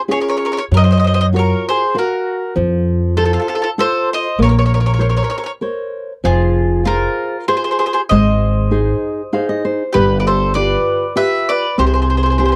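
A lilting waltz-time sway with a gentle swing carries this wistful, romantic Italian serenade, a short excerpt from a longer piece that moves from its opening section into a second section at 6.2 s. A mellow, woody mandolin sings the melody up front while a second, rounder mandolin traces a softer line beneath it, over fingerpicked flamenco guitar with fresh strings and a growly pizzicato upright bass that joins at 0.7 s. A nylon-string guitar fill slips in at 9.0 s, and the dry, close 1970s-style studio sound keeps every part intimate and near.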